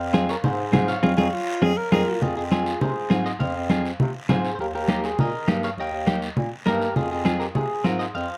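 A twangy, slightly broken-up electric guitar carries the melody through spring reverb over a punchy, roomy bass clarinet line, while a dark, clean hollow-body guitar comps, bright damped congas and a raspy, distant guiro drive the passionate cumbia groove, and an up-front tenor saxophone with vibrato adds a brief second line from 1.2 to 2.2 seconds during a band accent in this driving, rough home demo.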